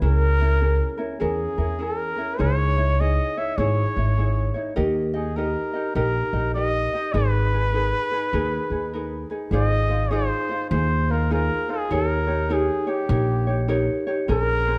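A dark, warm production set in a moderate recital-hall reverb carries this relaxed, dreamy Hawaiian excerpt at 101 BPM with a swung eighth-note feel, where a classical-style solo trumpet with light vibrato sings the melody up front over mellow fingerpicked ukulele and woody pizzicato upright bass on steel strings, moving from G# minor into Ab major at 9.5 s.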